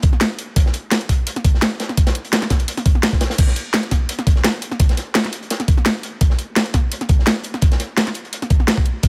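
A drum and bass groove in 4/4 at 170 BPM, with a light 54% swing on the 16ths, runs through this 9.1-second cut from a longer piece. Up front, an electronic, layered drum and bass kit delivers a cracking snare, bright hi-hats and crash cymbal, all pushed through overdrive. Beside it sits a sampler-style electronic kick, compressed and thumpy, re-recorded in a small room for a gritty edge. Further back, an acoustic breakbeat kit from a small room adds a dark, saturated hi-hat and a medium-tuned snare with a rolled-off top, high-pass filtered on the hats, snare and room. Studio ambience surrounds the drums, and the mood feels soulful and lush.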